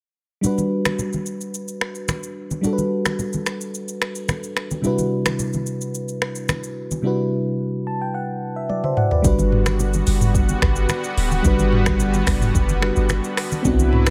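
Romantic and sunny, this afrobeats excerpt moves at 109 BPM in G major, with a mellow, round FM electric piano playing a soft, chorused accompaniment over Gmaj7 and Cmaj9#11. Alongside it sit an up-front, tape-tinged electronic drum kit of deep kick, metallic hi-hats, finger snaps, rim clicks, shaker and toms, and damped, low-tuned acoustic congas played with soft hands. The electric piano adds a fill from 7.6 s and the drums a short fill just before 9.2 s, when a lush, detuned sawtooth unison pad and a clean, boomy 808-style bass enter as the harmony returns to Gmaj7, all inside a digital ambience.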